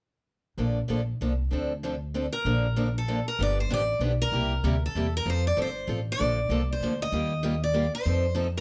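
This is acoustic string swing in the jazz manouche style, a short cut from a longer piece with a playful, swinging mood in a lilting three-beat metre. Upright bass and a picked steel-string acoustic guitar begin together at 0.6 seconds. The bass is plucked pizzicato on gut strings with a woody, thumpy tone, while the guitar plays chords with a bright, boxy parlour sound, fresh strings and audible finger squeak. A second picked steel-string parlour guitar enters at 2.3 seconds to carry the melody, its tone set in a plate reverb. The harmony moves from Bbmaj9 and Dm7 through G7 and C7, then on to an Ebadd9 before landing on F7. All three parts sit up front in a light room reverb, giving the recording an intimate, close feel.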